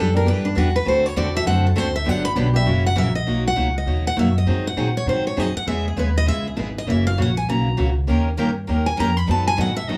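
A picked concert steel-string acoustic guitar carries the solo melody throughout this playful, lively stretch of acoustic string swing, its up-front tone marked by audible finger squeak. It sits over a brisk 199 BPM swung 4/4 that settles into B major from 3.3 s, with chords moving from Em7 and D7 through Bmaj7, C#m7 and F#7 to B7. A fresh-strung parlour guitar picks accompaniment up front beside a woody, pizzicato upright bass, while a bright, full-bodied dreadnought guitar adds background accompaniment until 3.1 s and returns at 8.1 s, all set in a small room with light reverb.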